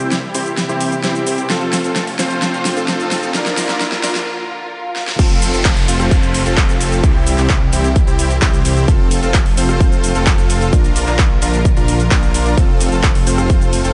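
A thick, detuned supersaw riff under a filter sweep opens this triumphant, uplifting festival progressive house track at 130 BPM in F major, joined from the start by lush bowed strings in the background, a menacing saturated saw bass and a big-room drum kit with a huge snare, metallic hats, handclaps and cabasa playing a fill, while background riser and downlifter effects lead through a brief break at 4.3 seconds into the drop at 5.2 seconds, where a punchy electronic kick enters up front beneath the pumping strings, supersaw and bass as the harmony moves through F, C and Bb.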